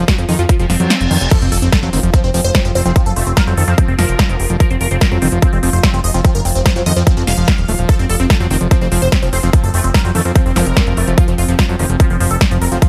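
A straight 4/4 pulse at 146 BPM drives this intense, psychedelic trance passage in F major, with an overdriven electronic kick up front and a layered dance kit of punchy snare, crisp hi-hats and crash cymbal; the kick drops out briefly as a reverse cymbal rises, and an impact marks the drop at 1.3 seconds. A fat, thick analog bass anchors the low end while a squelchy, resonant acid bass riff with tape echo sits in the background, and a detuned supersaw stab carries the melody through phaser and tape echo, with the stab, acid line and pad all pumping with sidechain. Beneath, an evolving, morphing wavetable pad holds mellow sustained chords with chorus and reverb, a metallic, distorted wobble bass surfaces as a second line around 2.8 seconds and again later, and a brief zap sounds in the background near the end of this close, tight-sounding mix.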